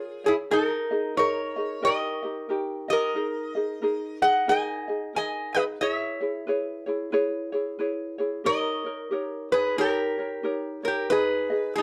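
Hawaiian music with a languid, sunny mood, this short piece is cut from a longer work and moves at an easy swung lilt in 4/4. A metal-body resonator slide guitar carries the melody throughout, its bright, metallic and slightly nasal slide tone played with fingerpicks and sitting up front. Beside it, a fingerpicked ukulele supplies a light, warm accompaniment, also placed up front and just beneath the guitar in level. The harmony drifts through minor-seventh and suspended chords, settling on C#m7 at 5.8 seconds, then D#7 before resolving to G#m at 11.1 seconds. A light reverb and a dark overall production give the pair a soft, intimate glow.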